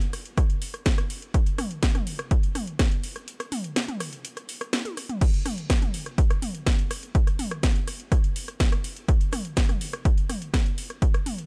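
Dramatic and cinematic, this straight 124 BPM techno cut pairs a punchy, up-front electronic kick drum entering at 0.4 seconds with a layered electronic drum kit of cracking snare, metallic hi-hats, rim clicks, toms and crash cymbal, set in digital ambience, with a break from 3.3 seconds capped by a drum fill at 4.7 seconds.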